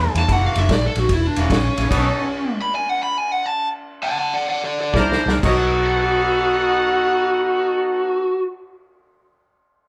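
Lead guitar through a small cranked amp carries the melody up front with an overdriven, picked bite across this rollicking, gritty electric blues shuffle in B mixolydian, swung in 4/4 at 119-148 BPM and cut from a longer piece. A dark, foam-muted vintage bass, tight jazz-style horn stabs and a punchy vintage drum kit with dark cymbals drive the opening before the band slows into a stop from 1.9 to 4.9 seconds, with the guitar ringing on alone. A drum fill brings everyone back, and from 5.5 seconds an amplified harmonica adds a scooped, tongue-slapping second line, all sharing a large studio room with a live-band feel.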